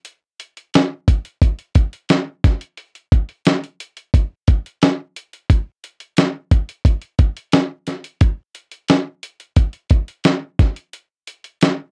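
Worn, warbling cassette tape colors this short indie pop cut with a light reverb and a warbly pitch drift, giving it a sunny yet hazy mood at 88 BPM in a straight 4/4. A dusty, soul-flavored sampler-style drum kit carries the whole passage from 0.1 to 11.8 seconds, its compressed, gritty hi-hat, thumpy kick and fat snare sitting up front in the mix.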